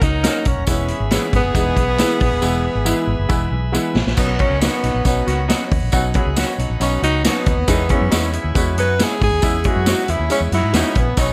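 A breathy, mellow tenor saxophone with light vibrato and scooped notes sits up front in this joyful, uplifting 1960s-style soul cut at 137 BPM in B major, taking a solo from 4.2 s after a drum fill at 2.4 s, over a loose, bright saxophone section, a worn, slightly detuned upright piano, a reedy tonewheel organ with subtle chorus in the background, a round, foam-muted fingered electric bass, a vintage drum kit with a punchy kick and dark cymbals, stabs from a slightly broken-up, lo-fi electric guitar, and a jingly tambourine, under light reverb.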